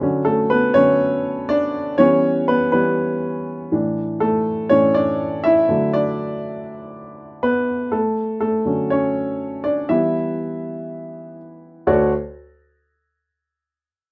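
A straight 4/4 pulse at 121 BPM carries this anthemic pop passage in D major, cut from a longer piece, with a solo baby grand piano moving through Dmaj7, Em, Asus4 and Dadd9 before returning to Dmaj7. The piano sounds dark, mellow and natural, spanning D2 to E5 and sitting up front from 0.0 to 12.1 seconds. A moderate studio reverb gives it a touch of space within a rough home demo mix, and the mood stays warm throughout.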